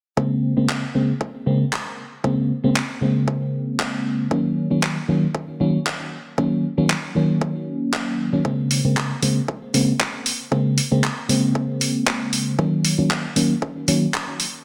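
Hypnotic, late-night deep house excerpt in which round, dark FM electric piano stabs, up front and shaded with chorus, delay, a low-pass filter and sidechain pumping, ride over a deep, overdriven electronic kick and a gritty drum kit of handclaps and hi-hat re-recorded in a small room, all set in a moderate echo-chamber reverb under a dense, heavily limited master.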